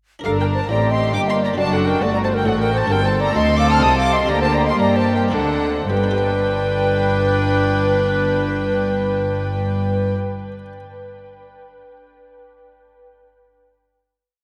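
A mellow, hollow baroque flute leads this short, driving, dramatic baroque-style concerto movement in 3/4, playing a pure, straight-toned, tongued melody that doubles the tune in sixths. Above it, a warm chamber violin section carries the main line, while a second violin section of rich, smooth-topped tone and a viola section supply independent inner lines and sustained chords, all with light vibrato and period-style gut-string playing. Underneath, a dark cello section walks in the background, and a double bass section doubles the bass line. A very quiet buff-stop harpsichord adds muted, lute-like rolled chords with a dry, plucked sound, lingering alone briefly after the ensemble stops, until 10.8 seconds. The tempo moves between 103 and 137 BPM, slowing from 2.2 to 5.9 seconds as the ritornello's G minor harmony passes through D7 and settles on a final G major chord. A huge, wet reverb with a long tail places the ensemble in a vast, echoing space.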